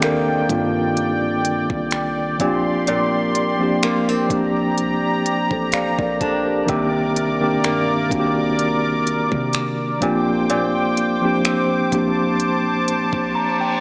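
A mellow tine electric piano sits up front in this sensual, moody contemporary R&B piece at 63 BPM, trading between Cm9 and Bb69 over a bright, detuned sawtooth pad with chorus and tremolo and a woody, boxy fingerpicked acoustic guitar whose old strings carry tape echo on its arpeggios. Beneath them, a deep, dark 808-style sine bass sits in the background while a trap kit of finger snaps, crisp hi-hats and a knocking kick holds a lightly swung 16th-note feel. A very quiet impact opens the piece, and near the close an electric piano fill arrives at 12.9 seconds, a reverse cymbal at 13.2 seconds and the drums drop out at 13.4 seconds, all within a dry, gritty cassette sound with light reverb.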